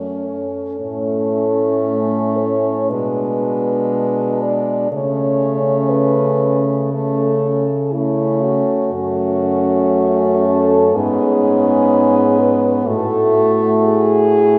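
Melancholic and elegiac, this lyrical classical piece for horn quartet moves at a slow 60 BPM in 4/4 and A major, its uneven beats breathing with a free, rubato feel. A mellow French horn carries the melody from 0.2 seconds, singing between E4 and D5. Beneath it, a warm horn shapes the second line, a second warm horn holds the inner accompaniment, and a soft-edged low horn anchors the bass from F#2 to C#3, sitting slightly beneath the others in level. The harmony drifts from F#m through A, Bm6 and A/C#, returning to F#m at 8.9 seconds before a C#5/G# and a closing F#m/A. A long, wet church reverb places the quartet further back in a resonant room, and the passage is cut from a longer piece.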